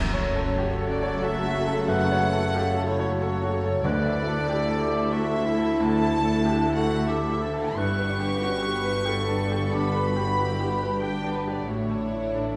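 A floating, pure-toned violin section carries a high second line above this hopeful, tender cinematic passage, bowed softly over the fingerboard and sitting close. Beneath it, a darker violin section sings the melody from further back, lush and woody with vibrato, while a very quiet viola section and a cello section with gentle vibrato fill the middle. A clear, intimate baby grand piano accompanies with long sustain and a touch of audible action noise. A distant, roomy clarinet adds its own second line from 0.6 seconds, a dark French horn section holds soft sustained chords, and a ringing concert harp plays fingerpicked arpeggios at a whisper. A rich double bass section anchors the low end with the cellos, and timpani with calf heads sound briefly between 3.8 and 4.8 seconds. Moving freely in three, the harmony passes from F#m through Dsus2 and G to Asus4, all bathed in a wet scoring-stage reverb in this fragment cut from a longer piece.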